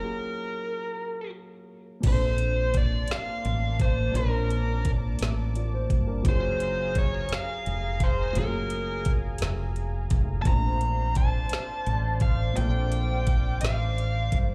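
A biting, overdriven lead guitar carries the melody in this tender, sensual slow six-eight R&B excerpt, its picked tone trailed by slapback and tape echo above a dark, boxy baby grand piano with audible action noise. At 2.0 seconds the opening break gives way as a knocking electronic drum kit with woody snare and metallic hats, a round, punchy fretless bass, and a detuned sawtooth pad with chorus enter, moving between lush major-ninth chords. It sounds like a live club gig heard through the venue's PA, with a touch of room reverb.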